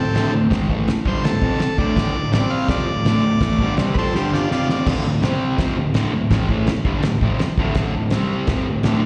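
A bright, double-tracked fuzz guitar riff sits up front through this rowdy, swaggering garage rock clip cut from a longer piece, while a buzzy, overdriven vintage combo organ takes a solo with plate reverb and slapback echo until 4.9 seconds, and a dry, cloth-damped drum kit with a fat snare, tight kick and dark cymbals thuds underneath and plays a fill from 4.1 seconds, all captured live through a club PA with moderate room reverb.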